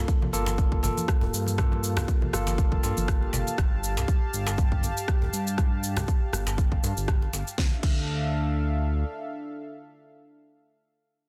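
A mellow analog pad with chorus, a bell-like tine electric piano playing stabs through gritty vintage sampler crunch and dub echo, and a smooth, evolving sawtooth bass with vibrato all open this driving afro house excerpt at 120 BPM in D minor, pumping against a punchy, up-front electronic kick and a house kit with a cracking, soft-clipped snare, rim click, shaker and crash. Bright, low-tuned congas sit in the background until 3.6 seconds, when the piano also stops, while a tight, saturated djembe with metal rattles plays on until 7.4 seconds. The harmony moves from Gm9 to Dmadd9 at 7.6 seconds, with the bass holding until 9.0 seconds and the pad sustaining alone to 10.8 seconds, all set in digital ambience within a dense, heavily limited master.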